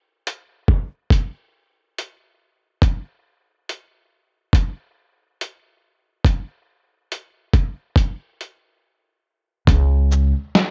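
A muffled, pitched-down sampler-style drum kit opens this hazy, melancholic lo-fi hip hop fragment at 70 BPM with a swung 16th-note feel, its thumpy kick, medium-tuned snare, hi-hat and shaker sounding compressed and overdriven up front in a dry mix coloured by worn, warbling cassette tape drift, before a break at 8.8 seconds and the entrance of a woody, steel-strung pizzicato upright bass, also up front, at 9.7 seconds.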